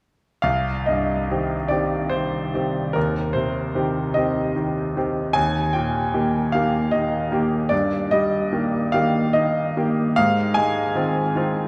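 Classical romantic nocturne in C minor for solo piano, mournful and yearning, unfolding at a slow, rubato 46-52 BPM in 12/8, its bright, brilliant grand piano sitting up front with a natural tone across C2 to Ab5 from 0.4 to 11.7 seconds, moving from Cm through Eb to a closing Ab6 chord, bathed in the long, wet reverb of a cathedral-like space in this fragment cut from a longer piece.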